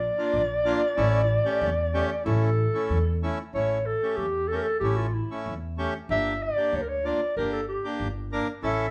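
A straight 2/4 pulse carries this soulful, bittersweet klezmer fragment, cut from a longer piece, with a dark, woody pizzicato upright bass on the low end and a reedy, hollow accordion joining at 0.2 s over chords moving from Bb to A and later Gm. Up front, a breathy clarinet with vibrato, scooped notes, a soft attack and a smooth top sings the melody in a jazz-tinged style, stepping into a solo at 3.5 s. The trio sounds like a band playing live together in one room, framed by a moderate, large studio reverb.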